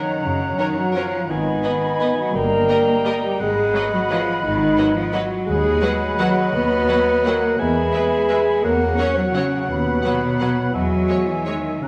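Sweeping and festive, this classical excerpt in an uneven, rubato triple metre is anchored by a tight French horn section holding sustained chords over a close, rich cello section and a woody double bass section. A soft-edged violin melody arrives in the background at 0.6 s alongside a clear, intense second violin line and a very quiet, even viola accompaniment, while a bright, airy flute ensemble, a mellow bassoon, a clear clarinet and a warm cor anglais add supporting lines. A very quiet timpani stroke lands at 11.8 s, and everything sits in the wet reverb of a recital hall.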